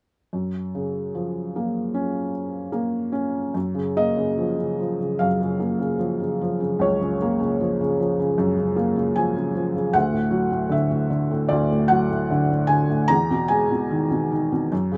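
A felt-muted upright piano plays alone from 0.3 to 15.0 seconds, its soft, mellow tone sitting intimate and up front under a light reverb. This short passage, cut from a longer piece, is a lyrical classical solo at 75 BPM in 4/4 with a rubato feel, peaceful and calm throughout. The piano spans Db2 to Bb5, opening on Gbmaj7 and later moving to D at 10.0 seconds and Emaj7 at 13.1 seconds.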